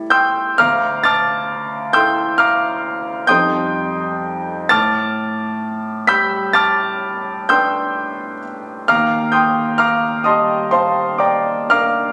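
In a slow, rubato 9/8, the pulse drifts between 34 and 45 beats per minute on the dotted quarter, so the meter feels more breathed than counted. This is a wistful, nocturnal passage of impressionist solo piano, a brief fragment cut from a longer piece. A single concert grand carries everything for the full 12.1 seconds, ranging from D2 up to B6, with a clear, intimate tone, deep bass and long sustain. It sits up front and present, polished yet close enough that the mechanical noise of the action can be heard. The harmony moves through colorful extended chords, from Am7 and Dm9 to F9 and Am11, before turning to Ebmaj7 near 8.9 seconds. Captured on a phone in the room, the sound is set in a moderate scoring-stage reverb with a 1.8-second tail.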